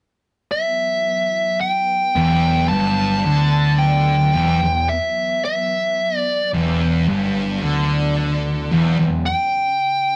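Sludgy, heavy metal at a crawl, cut from a longer piece, opens with a compressed, up-front fuzz lead guitar carrying the melody over a very quiet, vintage string-machine viola pad with a soft attack and ensemble chorus. At 2.2 s two thick fuzz guitars enter on the riff, one warm and forward, the other darker, joined by a bright, overdriven picked bass. The rough rehearsal-room sound carries light reverb and a dull, capped top end, and the harmony moves from E minor to a C# power chord at 9.3 s.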